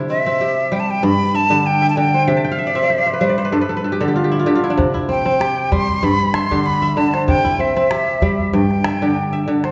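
A ringing, crisp kora carries this hypnotic, flowing West African string piece, fingerpicking arpeggios over a steady sway between C and G5 chords, with a fill from 2.3 to 4.8 seconds. Alongside it, a breathy, bright flute sings an expressive, vibrato-laden melody with a soft attack. A small, dry calabash enters at 4.8 seconds to add a lightly swung pulse, all set in a reverberant recital hall.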